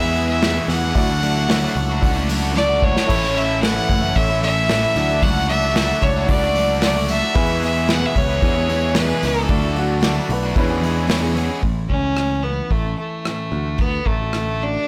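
Jangly and open-road, this folk rock and heartland rock excerpt at 112 BPM puts an intense, bright fiddle melody up front over picked electric bass, a full-bodied acoustic guitar, a biting, double-tracked overdriven guitar riff, reedy accordion chords, a barky electric piano with fast tremolo and an airy small-room drum kit played with bundle sticks that adds a fill at 2.6 s, while a woody upright piano slips in a brief second line at 9.7 s before the music moves into A major at 11.6 s with only fiddle, bass, acoustic guitar and drums carrying on, all set in light reverb on a blown-out, overdriven recording.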